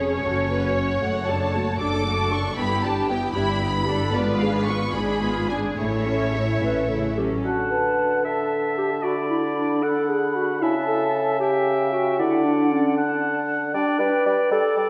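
Moving in 6/8 at 76 dotted-quarter beats per minute with a rubato feel, this quick classical-period movement for symphony orchestra in D major sounds urgent and dramatic. For the first six and a half seconds the string sections carry it alone: a close, expressive violin section sings the melody over a lusher, more distant violin line, while the violas supply smooth, even accompaniment and the cellos, with portamento, join the focused double basses on the bass line, all bowed with vibrato. The harmony passes from D/F# through Em7/G and a G#dim7 before settling on A. A mellow solo clarinet enters at 6.6 seconds, and by 7.5 seconds the winds take over. A clear, vintage-toned oboe and a pure, crisp-edged flute ensemble add upper lines, and an up-front, roomy bassoon provides accompaniment as the chords move through D, A7/C#, D and G. A wet reverb in the manner of a church or concert hall surrounds this brief passage cut from a longer work.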